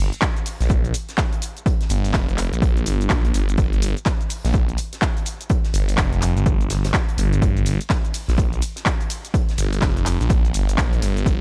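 Aggressive and bouncy, this short bass house excerpt rides a swung sixteenth-note feel in 4/4 across its 11.4 seconds. A phased, detuned saw bass sits up front from the very start, thick and swirling, its sustained tone saturated through tube warmth and pumping against the sidechain, all down in the low register between F1 and Bb1. At 0.1 seconds a layered big-room dance kit fills in the top with handclaps, hi-hat, ride cymbal and shaker. At 0.2 seconds an overdriven electronic kick lands beside the bass, punchy and layered, re-recorded in a large room yet kept close and forward, while a very quiet acoustic arena kit adds hi-hat and a fat snare beneath. The production is dark and nearly dry, keeping the low end heavy and close.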